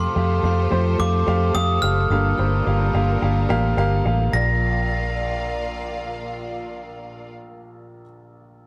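Set in a small room with light reverb and a dense, heavily limited modern master, this short pop passage has an uplifting, anthemic feel in a straight four. A glockenspiel played with brass mallets carries the melody high up, its bright, bell-like, sparkling tone trailed by a digital delay. Beneath it, a clear, woody upright piano sits up front with long sustain and a slightly detuned character, while a lush studio string section holds smooth, even bowed chords with vibrato further back. A vintage muted fingered electric bass anchors the low end, dark, round and punchy, foam-muted and prominent in the mix. The harmony moves from Fadd9 to Gm7 and settles on Bb at 4.3 seconds. The strings drop out at 7.3 seconds, the glockenspiel and bass stop at 8.0 seconds, and the piano then rings on alone until 8.7 seconds.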